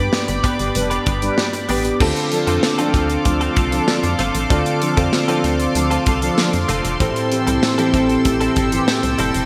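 A straight 4/4 groove at 96 BPM drives this moody, dramatic stretch of 1980s-style pop in D dorian, cut from a longer piece. The drum kit sits up front, with a punchy kick, a medium-tuned snare, hi-hat, crash and tambourine, all bathed in gated reverb and given a rolled-off top. A round, dark FM bass with a fast attack and decaying notes anchors the low end, while a mellow tine electric piano in lush chorus carries the accompaniment over the opening G chord before the harmony moves to Dm7 at 2.0 seconds and Am7 at 7.0 seconds. Above them, a shimmering, retro pulse-width pad holds slow-attack chords with a long release. In the background, a twangy, clean guitar recorded direct plays a picked riff through analog chorus and delay, and filter-swept synth brass with vibrato adds stabs from 0.8 to 9.0 seconds. A lush hall reverb and bright digital production give the whole mix an expansive, glossy sheen.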